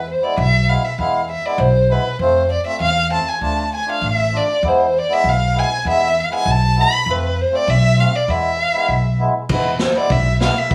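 Soulful and bittersweet, this short klezmer excerpt in a straight 2/4 sets a dark, woody bowed violin with vibrato and plate reverb up front over plucked upright bass and a reedy, mellow accordion, before a gritty, boomy garage drum kit with crash cymbal, kick and snare enters at 9.5 seconds in a small room.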